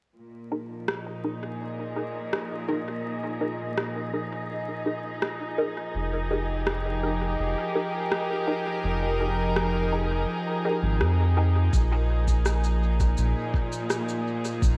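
A straight 4/4 pulse at 83 BPM from a tape-toned electronic rim click and shaker, treated with dub echo, anchors this deep, hazy ambient dub fragment, where a dark, reedy string section with gut-string tone and light vibrato holds sustained chords up front over Bb7sus4 and Fm11, a muted, wave-folded dub chord stab with phaser and echo sits in the background under a filter sweep, and an airy, breathy wind-like noise texture drifts behind it all, while a round analog bass arrives up front at 5.9 seconds and a muffled, thumpy kick joins at 11.7 seconds, the whole bathed in light digital ambience and vinyl crackle.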